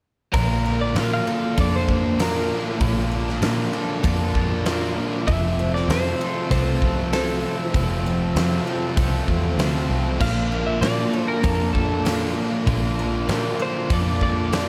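Rock in a shoegaze and dream pop vein, blissful and dreamy at 97 BPM, this short excerpt floats over Bbmaj7 and Fmaj7 as a clean twelve-string electric guitar with tape echo carries the melody above an overdriven guitar riff bathed in reverse reverb, a thick fuzz guitar with lush chorus, a dark, round foam-muted picked bass and a huge arena drum kit with a fat snare and punchy kick, while a very quiet, boxy twelve-string acoustic shimmers in arpeggios from 0.7 seconds and a warbling, nostalgic tape-like pad enters at 1.2 seconds with sustained chords in the background.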